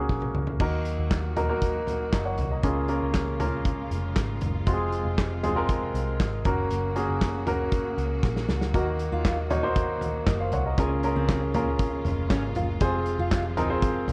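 A clear, polished baby grand piano sits up front in this warm, anthemic slice of piano-driven pop at 118 BPM in a straight 4/4, carrying the accompaniment through a cycle of Gb, Ebm, Bbm7/Db and Fm. A loose indie drum kit opens with a fill before the groove settles, its tight kick, medium-tuned snare, handclaps, toms and dark cymbals pumping in a small room, and a second fill at 8.2 seconds marks the return of the progression. Beneath it, a vintage muted picked electric bass gives a round, dark, foam-muted tone with tube saturation. A lush, bright studio string section holds bowed, vibrato-rich chords in the background from 0.6 seconds. At 8.7 seconds a full-bodied fingerpicked jumbo acoustic guitar adds a riff from further back in the mix. The whole passage carries light reverb and the worn, warbly pitch drift of old cassette tape, and it is cut from a longer piece.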